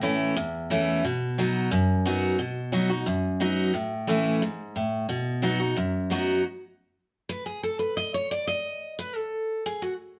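Rustic and driving, this short cut from a longer bluegrass piece moves at a brisk 178 BPM in a straight 4/4, set in B mixolydian with tuning a touch above standard pitch. A single picked steel-string acoustic guitar carries everything, its dreadnought body giving a full-bodied tone that sits up front, with finger squeak audible along the strings. It spans a broad range from E2 to D#5, working over an alternating A and B major progression in the opening stretch. At 6.4 seconds the harmony drops away and the guitar takes a solo passage through to its final note at 9.9 seconds. The moderate studio reverb and live, single-room capture lend the playing an open, natural presence.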